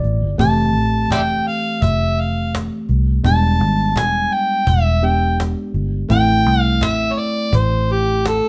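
Straight-eighth soul blues in A minor at 84 BPM, brooding and mournful, opening with a short fill on a worn, slightly out-of-tune tine electric piano before an overdriven harmonica takes the solo melody at 0.4 seconds, gritty and amplified with light vibrato, tongue slaps and scooped notes. Underneath, a dark, round, foam-muted vintage electric bass sits up front and punchy beside a snappy, close cajon with snares, while the mellow electric piano plays accompaniment over a Fmaj7, E7#9 and Am7 progression. The band plays live in one room with moderate studio reverb, and the piece is cut from a longer performance.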